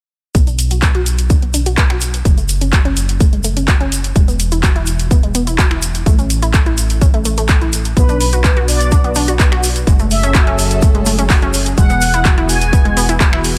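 A dreamy, expansive progressive house groove in B dorian at 126 BPM opens with bright, detuned unison pluck arpeggios under a filter sweep and dub echo, a tight, driving sawtooth sequencer bass, a punchy up-front electronic kick, and a deep house kit of finger snaps, handclaps and overdriven metallic hats, with the pluck, bass and hats pumping under sidechain, while a grainy tube shaker sits in the background. At 8.0 seconds a smooth, expressive synth lead enters with vibrato, ensemble chorus and tape echo. A thick, lush unison pad follows at 8.6 seconds with chorus and phaser over chords moving from Bm through F#madd9 to Eadd9, all in a dry, close mix cut from a longer piece.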